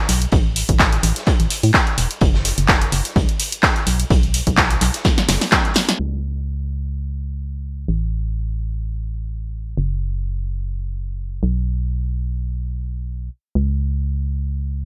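A bright, 1980s-style digital sheen with light studio reverb gives this bittersweet, energetic piano house cut its glossy character, its swung sixteenths riding a punchy up-front kick, an analog drum machine's claps, punchy snare and hats with gated reverb, and a gritty, saturated garage kit tucked low in a stone-room ambience. Underneath, a hollow, dark, organ-like FM bass with fast-attack, decaying notes pumps against the sidechain throughout. After a drum fill from 5.0 seconds, the drums drop out at 6.0 seconds and the bass carries on alone through a filter sweep to the end.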